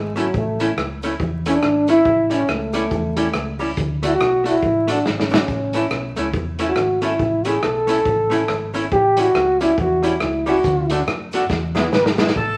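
Wet, roomy and dusted with vinyl crackle, this cheerful ska excerpt swings along at 140 BPM in A major, led by an up-front, dark trombone solo with light vibrato and scooped notes over a round, hollow-body electric bass, a clean, compressed archtop guitar carrying a dub echo, and a very quiet, grainy cabasa. A vintage drum kit with a punchy kick and rolled-off top pumps in a small room, with fills around 5.1 and 11.5 seconds. At 12.4 seconds a gritty, overdriven tonewheel organ through a slow rotary speaker sounds a single A4 as the clip ends.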